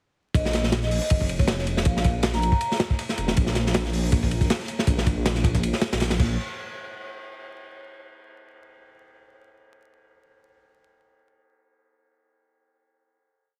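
Dark and atmospheric, this short drum and bass piece with a jungle edge drops straight in at 0.3 seconds with a gritty, heavily chopped breakbeat pushed up front. Its tight kick, medium-tuned snare and dark cymbals sound saturated and rolled off at the top, with a light swing on the sixteenths. Beneath it sits a deep, rumbling detuned saw bass, thick with tube saturation, holding long gliding notes low in the register. A vibraphone played with soft mallets and motor off adds mellow, airy, ringing short phrases through dub echo until 2.7 seconds, floating above the low end. Far back in the mix, a very quiet, tape-warm sampler-style soul kit loops a dusty hi-hat and snare pattern with edits. Heavy radio-style compression, vinyl crackle and studio reverb lend the piece a worn, broadcast-like feel before it closes on a final hit at 6.4 seconds.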